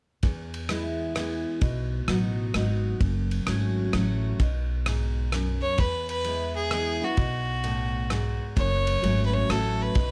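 A swung waltz at 130 BPM in 3/4 sets a honky-tonk and classic country groove in E major, heartfelt and nostalgic in mood, in this short cut from a longer piece. A damped 70s drum kit keeps time with a tight kick, ride cymbal and rim click, its dry, mid-forward sound sitting beside a woody, thumpy upright bass played pizzicato on steel strings. Up front, a full-bodied dreadnought acoustic guitar is picked through the chords E, B and F#m, with finger squeak audible along the way. At 5.6 seconds a clear fiddle enters with the melody, a single bowed player with light vibrato and a biting, intense edge that sits forward in the mix. Light reverb gives the parts a modest sense of space.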